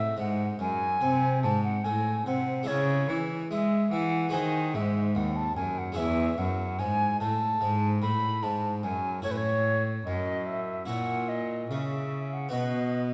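A resonant recital hall surrounds this short excerpt from a baroque-style sonata movement with continuo, giving the performance a lingering 1.6-second reverb tail. In C# minor at 73 BPM in a straight 4/4, the mood is serene yet dance-like. The baroque flute carries the melody up front with a pure, wooden tone, a crisp attack, rolled-off highs and expressive vibrato. Beneath it, a single bowed cello holds the bass with a gut-string, reedy period sound and light vibrato, while a close-miked, dry harpsichord adds a brilliant, plucked French-style accompaniment with octave strings. The harmony moves from G#7 to C#m and later through F#m7/A and A#dim at 10.9 seconds before arriving on B at 12.5 seconds, as the excerpt breaks off.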